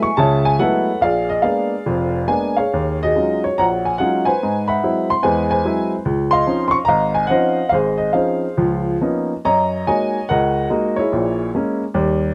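Warm and swinging, this solo jazz piece in Db major moves at 144 BPM in 4/4 with a swung, rubato feel, cut from a longer performance. An upright piano carries everything alone across a broad range, its woody, smooth, vintage tone and long sustain placed up front through close, detailed microphones with light reverb. Rich extended harmonies such as Gbm11, Ab7alt and Dbmaj9 lead to Db13, and a new section opens at 9.4 seconds on F#69 before the excerpt ends at 12.3 seconds.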